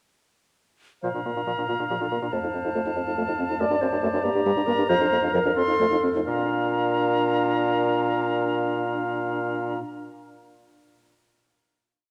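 A dark, warm production sits inside a reverberant concert hall, lending a glowing resonance to this complete classical-period movement for wind quintet. In 6/8 at 84-94 BPM, counted in dotted quarters, the graceful, lively piece in Bb major begins at 1.0 s and moves through Bb, F7, D7/F#, Gm, Bb/F and F7. It slows from 3.0 s and settles on a held Bb chord at 6.3 s. A close-miked, airy concert flute carries the melody high above with vibrato and a soft attack, while a distant, roomy oboe adds a second line. The clarinet, dark with a smooth top, fills out the accompaniment, and the French horn, shaded with vibrato, pairs a driving rhythmic ostinato with sustained chords. Up front, the bassoon anchors the bass with light vibrato, a driving ostinato and sustained low notes.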